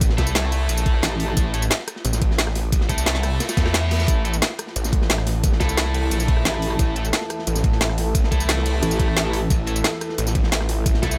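A straight 4/4 pulse at 177 BPM drives this dark, futuristic technical drum and bass in A minor, where a knocking overdriven electronic kick and an up-front kit with a woody snare, bright hats, rim click and tambourine sit over a gritty, rolled-off breakbeat kit in the background, while a snarling, detuned saw bass growls from A1 to E2, a sludgy double-tracked guitar picks overdriven stabs through dub echo from 0.2 seconds, a metallic FM wobble bass bursts in briefly, a reverse cymbal sounds at 3.6 seconds, and a deep, moody pad with sidechain pumping settles in from 5.2 seconds in this short studio-reverbed cut from a longer piece.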